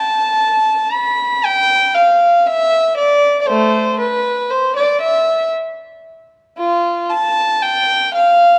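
A classical, baroque-style suite movement for unaccompanied violin, this brief fragment of a longer piece moves in a flowing, dance-like 3/4 at 59 BPM with a supple rubato feel, tuned to A4 = 437 Hz. A single bowed violin plays solo across the full 8.6 seconds, ranging from A3 to B5 with a dark, nasal, reedy gut-string tone in period style. It sits up front yet slightly distant in a moderate concert hall reverb of 1.9 seconds.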